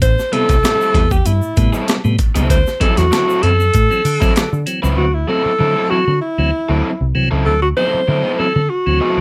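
Funky and sly, this 97 BPM funk excerpt sets a warm, vibrato-laden alto saxophone out front for a jazz-style solo melody over Am7 moving to D9, backed by a dark, round, foam-muted picked bass and a gritty, compressed sampler-style breakbeat kit with a thumpy kick that drops out at 4.8 seconds. A lightly overdriven tonewheel organ with key click and a stopped rotary speaker adds piping stabs, an overdriven semi-hollow guitar joins at 0.3 seconds with picked accompaniment, and a grainy, bright tube shaker sits in the background until 5.0 seconds. Light reverb gives the parts a touch of space.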